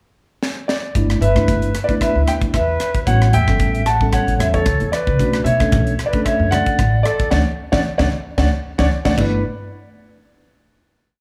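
Set in a small room with light reverb, this short, bright and soaring electric jazz fusion piece in G lydian swings at 113 BPM: a crisp drum kit with a high-tuned snare and punchy kick opens with a fill at 0.4 seconds and drives a samba groove, a dark, intimate concert grand piano with audible action noise and slapback echo carries a motif-based melody in period phrases, a pure metal flute with vibrato and the same echo adds a harmony line mostly in thirds, a mellow tine electric piano pushes rootless chords through its built-in speakers, a woody, thumpy upright bass plays a syncopated pizzicato riff, damped congas enter in the background at 5.2 seconds, and a band accent from 7.3 seconds leads into a final hit at 9.4 seconds.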